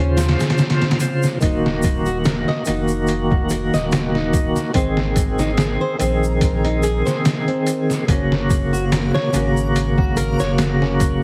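Brooding, melancholic trip hop cut from a longer piece, where a reedy, up-front tonewheel organ with key click, slow rotary speaker, tremolo, sampler grit, tape echo and a filter sweep carries the chords over a round sine sub bass and fingerpicked, boxy flamenco guitar arpeggios with finger squeak and delay, while a muffled, pitched-down, overdriven sampler-style kit with a thumpy kick and a close tube shaker with group handclap join at 0.2 seconds, and a reversed, detuned, granular swelling texture drifts in the background from 5.4 seconds, all under a heavily compressed radio sound with vinyl crackle.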